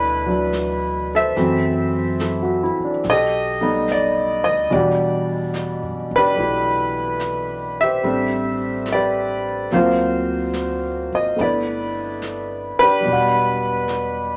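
A tender, romantic jazz ballad opens with a concert grand piano and a plucked upright bass together, the piano sitting up front with an intimate, natural tone, deep low end and audible action noise. A brushed drum kit joins at 0.5 seconds, its medium-tuned snare and hi-hat kept soft and well behind the other parts. The bass is woody and thumpy, its gut strings giving a warm pulse under a gentle swing. The piano carries the accompaniment through lush harmony, moving from a rootless G6/9 through altered dominants and minor ninth and eleventh chords before settling on G6 and then Em7. A moderate studio reverb adds a modest sense of room to this short excerpt, which is cut from a longer piece.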